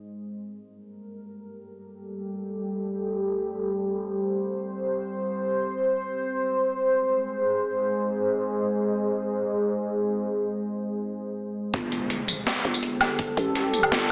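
A deep, moody ambient pad of detuned sawtooth unison over a sine sub octave fills this tense, cinematic half-time drum and bass excerpt in free time, its chords shifting from Gmadd9 to Ab under a filter sweep, with chorus, 12-bit sampler grit and sidechain pumping. At 11.7 seconds the drop arrives: a gritty, pitched-down boom bap kit with a high-tuned snare, hi-hat, tambourine and woodblock sits up front in dub echo, joined by a thumpy electronic kick and an electronic impact in the background, while a growling, buzzy 808-style bass enters low. The whole is bathed in plate reverb and heavy echo, with a small-speaker sound.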